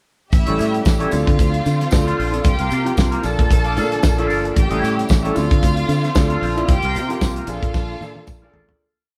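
Driving and danceable, this short disco piece rides a dry, up-front 70s drum kit with a tight kick in a four-on-the-floor beat and sixteenth-note hats, while a round, foam-muted fingered electric bass plays octave lines with slides. A twangy clean electric guitar chops out sixteenth-note parts through wah and spring reverb, a concert grand piano adds syncopated chord stabs with grace notes, and a jingly tambourine marks the backbeat in the background. A lush, distant violin section plays fast runs into held notes over a smooth, sustained string pad with portamento, all in a live-room sound that fades out from 6.7 s as a drum fill arrives at 7.7 s.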